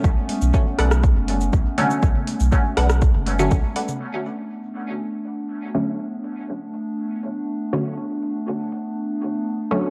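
Hazy and cassette-worn with light digital ambience, this deep dub techno excerpt sets a warbling, nostalgic pad and a muted, full-bodied sawtooth chord stab, treated with phaser and dub echo, over an overdriven deep house kit of metallic hi-hat, rim click and shaker, while a round, soft sub bass pumps beneath an up-front, overdriven kick until 3.6 s, analog toms sit in the background, and a brighter, wave-folded second stab plays a riff from 0.8 s.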